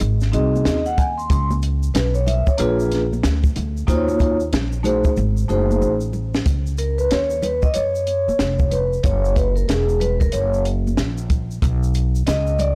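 Soft-mallet vibraphone, metallic and ringing with a slow motor vibrato, enters at 0.3 s over a woody, thumpy pizzicato upright bass with tube saturation, a dark, punchy compact cocktail kit with a high-tuned snare, and quiet, close tube shaker and congas in this smoky, mellow jazz-hop at 93 BPM with a swung 16th feel. The drums play a fill at 5.2 s before the vibraphone takes a solo from 6.5 s, all in a blown-out, overdriven small-room recording cut from a longer piece.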